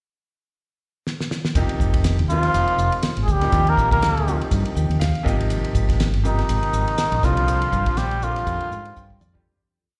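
Heard as a live gig through the venue's PA with recital hall reverb, this short, slick and nocturnal electric jazz fusion piece opens on a drum fill from a damped 70s kit, dry with dark cymbals and a fat snare, riding a fusion groove up front. At 1.6 seconds a growly fingered electric bass enters with a syncopated riff, alongside a bright concert grand piano pushing quartal chords with deep bass and long sustain, adding fills along the way. From 2.3 seconds a cup-muted trumpet carries a breathy, raspy motif-based melody with scooped notes and growls, shadowed in the background by a punchy trombone in octave doubling, before the whole piece fades out from 7.5 seconds.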